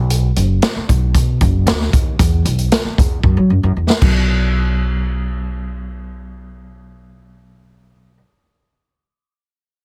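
A woody, growly pizzicato upright bass opens this uplifting, danceable fragment of uptempo 1960s-style soul at 115 BPM in a straight 4/4, joined almost at once by an up-front, natural-sounding swinging big-band drum kit with a punchy kick, medium-tuned snare, hi-hat and crash that plays a fill from 3.2 seconds before stopping at 4.1 seconds, leaving the dark bass alone in a dry, heavily compressed radio sound tuned slightly sharp to A4 = 444 Hz.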